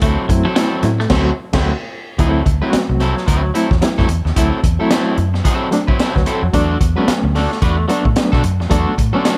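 A crunchy breakbeat kit sits up front in this gritty funk excerpt, its punchy kick, high-tuned snare, hi-hat, dark cymbals and crash sounding saturated and small-roomed with a rolled-off top. Beneath it, a vintage fingered electric bass carries a round, foam-muted, amped tone, while a picked electric guitar at the edge of break-up supplies twangy accompaniment throughout. A second guitar in the background plays a short riff through a phaser that ends at 1.1 s, as a band accent begins, and a reedy, bright electric piano with tremolo adds clean stabs from 0.3 s. The groove swings on the sixteenths, and the harmony rests on D9 before moving to E9sus4 at 6.5 s. Studio reverb surrounds the parts, lending the funky groove a sense of space.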